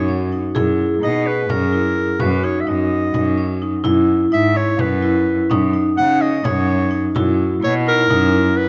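Set in a restless 7/8 with a straight feel, this shimmering contemporary chamber piece, cut from a longer work, carries a bright, classical-style clarinet melody up front over a rich, earthy bowed cello bass with light vibrato and a nasal edge. Two vibraphones fill the middle: one with medium mallets plays a second line with slow motor vibrato and a vintage, band-limited tone, while the other, struck with medium hard mallets and motor off, rings out metallic arpeggios. A small, close and dry frame drum joins at 0.1 seconds, and light reverb surrounds the ensemble as the harmony moves over F# in the bass.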